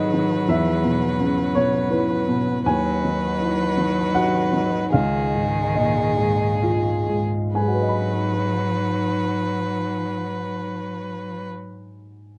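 Softened by light reverb and a dark, warm production, this neoclassical piece for piano and strings in G# minor carries a longing, reflective mood, and it is cut from a longer work. It moves in a rubato 3/4 at 64 to 85 BPM, slowing through its opening section over a progression of Esus2, G#m7/D# and C#add9 before settling on G#m7 as a new section begins at 7.5 seconds. Up front, a boxy baby grand with short sustain supplies the accompaniment across its low and high registers. A single violin, also up front, sings the melody with smooth, even vibrato, while a solo cello traces an expressive second line with soft attack and portamento, the two strings sharing a rich bowed tone. Behind them, a detuned, warbling tape-like pad with chorus and lo-fi nostalgia holds sustained chords in the background. The strings and pad stop at 11.5 seconds, leaving the piano alone until 12.4 seconds.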